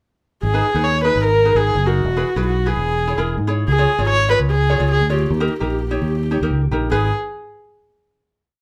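A straight 4/4 calypso pulse carries this brief, brooding and bittersweet piece, where a close, intimate viola bowed sul tasto with light vibrato and an airy, soft-attack tone sings motif-based song phrases up front over a punchy, warm fingered electric bass playing a syncopated figure and a bright, fingerpicked ukulele picking light rhythmic triad chords, all played live in one room with light reverb through a short verse before settling on a final chord at 6.9 seconds.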